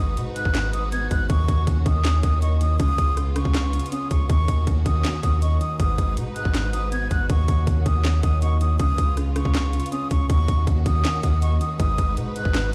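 Heard through a big sound system in a bare room, this 12.7-second cut from a longer piece carries a stone room reverb that gives it a hard, echoing space. It is dark, hard-hitting trap-flavoured hip hop in Eb minor at 160 BPM, felt in half-time in 4/4, cycling through Abm7, Ebm7 and Db7 chords. A breathy, straight-toned flute carries the melody high in its range with a soft attack and a trailing delay, close-miked over a dusky grand piano whose boxy, mellow accompaniment sits in the low and middle register. A lush studio string section holds bowed, biting chords with vibrato further back in the mix. Up front, a deep, sine-like 808-style bass hits with a fast attack and long decay, while the electronic trap kit, entering at 0.2 seconds and stopping at 12.6 seconds, brings a hard-clipped kick, sharp snare, metallic hi-hats, handclaps and rim clicks with a tape-warm character.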